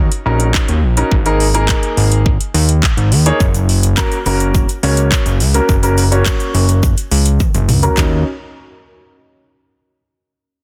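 A fat, saturated analog bass with a detuned sawtooth edge and a quick filter pluck pumps against the sidechain up front in this energetic, confident dance-pop excerpt at 105 BPM in Eb minor, moving through Ebm7, Absus2 and Gb. A clear, polished baby grand piano shares that pumping as a filter sweep runs across it, while a punchy house kit of layered kick, metallic hats, handclaps and toms drives the straight 4/4 groove into a drum fill at 7.4 seconds. A grainy, very quiet egg shaker joins at 3.4 seconds, and the dry, dense, heavily limited master keeps the mix tight and loud.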